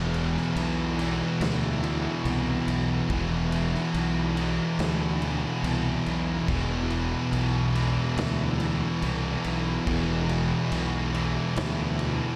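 A thick, warm fuzz guitar sits in the background of this ominous, sludgy stoner and doom metal excerpt at 71 BPM. It shares an E5 riff in the low register with a bright, double-tracked high-gain guitar and a second, very quiet, dark fuzz guitar. Beneath them a punchy, overdriven fingered bass with tube saturation and a gritty, saturated garage drum kit of kick, snare and crash, heard in a stone room with a rolled-off top, carry the heavy 4/4 groove to 12.2 seconds under light reverb.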